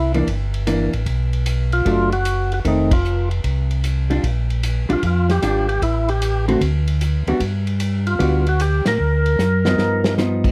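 Soul jazz organ trio in a swinging, soulful mood, taken from a longer piece, with a percussive tonewheel organ carrying the melody through a slow rotary speaker, its key click and second harmonic percussion sitting up front over a round, dark tonewheel organ bass line. A clean, picked hollow-body electric guitar with a compressed, shadowy tone supplies the chords, while a small-room acoustic drum kit with tight kick, medium-tuned snare, hi-hat, ride and crash keeps a rolled-off, mid-forward swing under light reverb. The band hits accents at 2.9 and 8.8 seconds, and a drum fill from 9.4 seconds leads toward the close.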